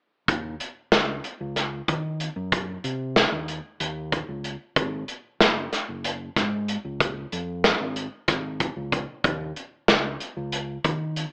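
A punchy, up-front modern studio drum kit leads this bright, driving fragment of progressive instrumental band music, its hi-hat, kick drum and snare drum played with a medium-tuned snare and a pumping room sound. Beneath it, a fingered electric bass supplies a dark, round, amped low end, ranging from Gb1 to Eb3 and sitting lower in the mix than the drums. The groove runs in an uneven 7/8 at 187 eighth-note beats per minute with a straight feel, and both parts play together from 0.3 seconds to about 11.3 seconds as a single section. A moderate studio reverb adds a short sense of space, while the overall sound has the narrow, filtered character of AM radio. Cut from a longer piece, it conveys relentless forward momentum in a compact span.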